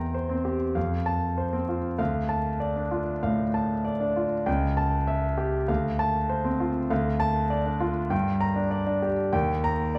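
In a rubato 4/4 at 98 BPM, this brilliant, sparkling classical virtuoso piano study, cut from a longer piece and tuned to A4 = 437 Hz, features a clear, intimate grand piano playing solo from C#2 to Bb5 with audible action noise, placed up front within a wet large studio reverb and vinyl crackle as its harmony moves from C7/E through F, Dm and A7/C# toward Gm and Eb.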